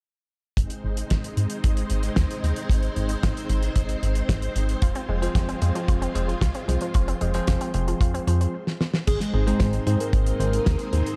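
Sunny and danceable, this short italo disco excerpt in Ab major moves at 113 BPM in a straight 4/4, built on a tight, dry kick, a damped 70s kit with a fat snare, hi-hat and crash, and an up-front, glossy chorused synth bass under lush, vintage string machine chords carrying ensemble chorus. From 4.8 s a round, nasal analog pluck arpeggiates in the background with chorus and tape echo, joined by bright, bell-like tine electric piano stabs, as the harmony shifts from Ab to Fm. After a brief stop and drum fill, a soft octave-layered synth lead with vibrato takes the melody at 9.1 s over a return to Ab, all set in a dark production with light reverb and studio ambience.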